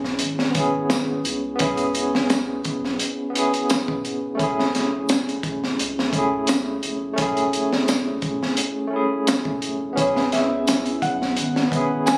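Captured on a phone in the room, this excerpt carries a light reverb and small-room studio ambience around a melancholic, cinematic trip hop groove at 86 BPM in C# minor. A crunchy breakbeat kit sits up front, its punchy kick, high-tuned snare and hi-hat coated in vintage 12-bit sampler grit, saturated and dark with a rolled-off top. Beside it, a bright, barky tine electric piano plays the accompaniment through a combo amp with tremolo and tape echo, moving from C#m7 to F#m7 at 4.4 seconds, while a round, soft dub sub bass hums deep in the background. A tambourine joins at 0.9 seconds, distant and set in a large room in the background. Near the close, a felt-muted upright piano takes the melody at 10.0 seconds, mellow and intimate with tape echo, as the harmony returns to C#m7 and a very quiet, warbling, detuned pad adds nostalgic lo-fi chords with chorus.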